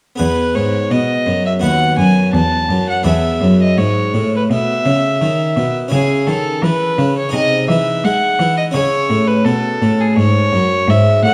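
A straight 4/4 pulse at 84 BPM carries this radiant, serene baroque-style sonata movement in E major, heard as an excerpt from a longer piece that moves from E major harmonies toward C-sharp minor. Up front, a single bowed violin sings the melody with a reedy gut-string tone and light vibrato. A plucked, brilliant French-style harpsichord with octave strings, also placed up front, supplies the accompaniment, while a bowed period-style cello anchors the bass with a rich tone, all in the airy wash of a recital hall.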